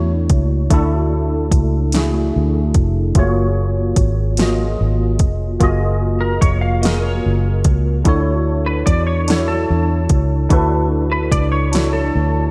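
Light reverb gives this slow, sensual R&B passage an intimate sound; it moves in a straight six-eight at 49 BPM, counted in dotted quarters, and is tuned to A4 = 444 Hz. A worn, slightly out-of-tune tine electric piano, clean through a combo amp and treated with ensemble chorus, sits up front as the accompaniment, moving from Dmaj9 to F#maj9 and back to Dmaj9. Beneath it, a vintage muted fingered electric bass sounds dark, round and punchy, its foam-muted, amped tone placed forward in the mix. The electronic drum kit enters at 0.3 seconds with a soft kick, a fat snare and metallic hi-hats, driven through overdrive and also placed up front. At 6.2 seconds a semi-hollow electric guitar adds a softer second line, fingered and compressed, with a hollow-body warmth and its own ensemble chorus.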